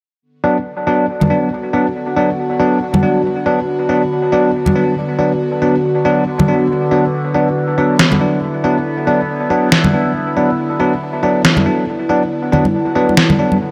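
A bell-like, bright tine electric piano stabs through dub echo over a wave-folded drone of sustained chords with moving overtones, while close, hard-hand congas carry their own echo and a muffled, pitched-down electronic snare joins at 8.0 seconds in this heavy, meditative deep dubstep excerpt in B minor at 139 BPM, with a half-time swung feel and a gritty hardware sound.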